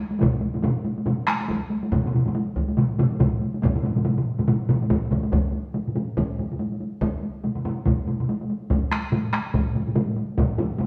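A solo taiko drum struck with heavy sticks opens at 0.1 s, compressed and saturated and placed up front, and three taiko ensemble parts join at 0.2 s. This driving, ceremonial Japanese traditional piece moves in 4/4 with a lightly swung sixteenth-note feel and shifts into a new section at 5.3 s. One ensemble part has a vintage, band-limited tone and the other two carry a small-room sound, all played live together in a stone room with a wet reverb, in a passage cut from a longer performance.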